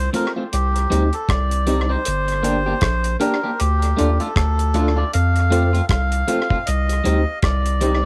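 A swung sixteenth-note roots reggae groove rides on a dry, deep drum kit of tight kick, rim click and hi-hat, with a round, soft sub bass sitting up front beneath chords moving through F, Cm, Gm and Dm. A slightly broken-up, compressed electric guitar plays the accompaniment while a worn, slightly out-of-tune electric piano adds stabs with a fast tremolo. A breathy, nasal melodica carries the sunny tune up front, with tape echo on the melodica, guitar and drums and cassette grain giving this short cut from a longer piece a homemade, lightly reverberant feel.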